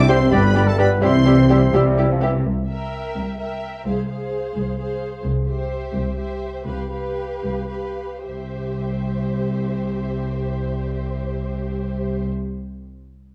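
In a rubato 6/8 pulse of 69-88 BPM, this urgent, stormy excerpt from a fast romantic orchestral movement in C major opens with a brief wind and brass flourish of punchy French horns, mellow trombones, clear trumpet stabs, airy silver flute, dark clarinet, bright oboe and soft-attack bassoon that is gone by 2.3 seconds, leaving a lush, focused violin melody over a smooth-topped second violin line, even violas, expressive cellos and distant double basses, slowing from 4.6 to 8.3 seconds as the harmony passes through C7 and Fm/C in a reverberant hall.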